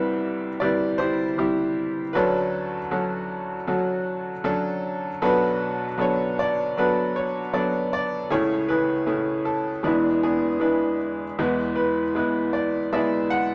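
Intimate and hopeful, this short excerpt of an acoustic folk-pop ballad moves at an unhurried 78 BPM in a straight 4/4 feel. A bright upright piano plays alone throughout, reaching from B1 up to F#5, with a brilliant, woody tone and audible action noise that keep it close and up front. The harmony passes through Cmaj7, Dmaj7 and Bm7 before settling through Amaj7/C# and E7, arriving on E at 11.4 seconds as a new section begins. A moderate studio reverb gives the instrument a gentle sense of space, and the tuning sits slightly below standard pitch at A4 = 436 Hz. The recording ends at 13.5 seconds, cut from a longer piece.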